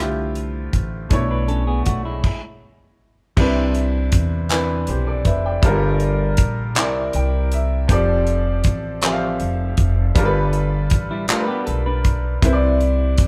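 Late-night and sultry, this slow six-eight R&B excerpt moves at 53 BPM with the light reverb of a band playing live in one room: a brilliant, long-sustaining baby grand piano and a woody, thumpy pizzicato upright bass open together, a dry, damped 70s drum kit with tight kick, hi-hat, handclaps and crash joins at 0.4 seconds, a clean, hollow-body electric guitar adds brief second-line phrases from 1.3 seconds, and after a full band stop the harmony moves through Cmaj7, Gm7 and C7, with a short piano fill at 6.8 seconds.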